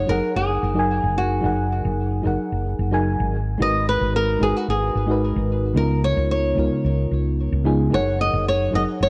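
Sunny and smooth, this short sunset chillout excerpt pairs a fingerpicked flamenco guitar melody, touched with delay, against a mellow, warbling FM electric piano with chorus and digital delay, while a round, punchy fretless bass with a woody, hollow-body tone anchors a light reverb space as the chords move from F#6 through G#m9 and C#13 back to F#6.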